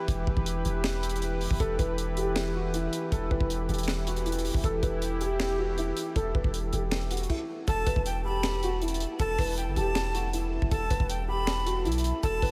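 Menacing and brooding, this half-time trap excerpt at 158 BPM in E minor opens on a detuned sawtooth pad with chorus and tremolo over a deep, sine-toned 808 bass and a dry funk kit with a high-tuned snare, bright hi-hats and finger snaps, before a dark, boxy grand piano filtered through analog chorus and delay takes the melody at 1.6 seconds and a breathy, chiffy flute adds a high second line at 7.7 seconds, all bathed in a dreamy 8.2-second reverb.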